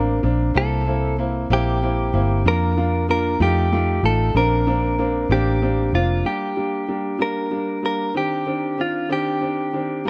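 A clean, direct-recorded electric guitar opens this swaying, romantic six-eight pop ballad, carrying the melody over a clear upright piano and a round, foam-muted electric bass, all three sitting up front from the start. The tempo is a gentle 63 BPM counted in dotted quarters. The guitar is picked and compressed, and a tape echo trails its notes within a narrow range. The piano's intimate, woody, somewhat boxy tone comes with audible action noise as it supplies the accompaniment. The dark, punchy, amped vintage bass anchors the opening passage over chords such as Bbadd9, C7 and F7, then drops out at 6.2 seconds as the harmony turns to Gm and Cmadd9. Guitar and piano continue together to the end of this excerpt at 10.1 seconds, set in a light studio reverb.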